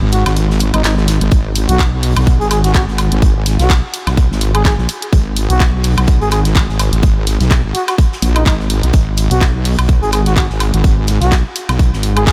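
Bass house with a gritty, bouncy mood and a swung 4/4 groove, taken from a longer piece. A heavy, saturated wobble bass with a detuned sawtooth edge and sine weight sits up front, thickened with chorus and pumping against the sidechain, while a bucket-muted trumpet plays a dark, veiled solo line in a classical style with light vibrato and a soft attack, trailed by analog delay. Underneath, a tape-warm garage kit of handclaps, hi-hat and woodblock carries studio reverb, and a very quiet acoustic indie kit adds hi-hat and a fat snare in a pumping room. The opening 1.3 seconds act as a break, after which a tight, layered electronic kick lands up front with its own reverb and drives the track to the end of the excerpt at 12.3 seconds. The whole passage rests on a single G#m chord, and the mix has a light studio reverb.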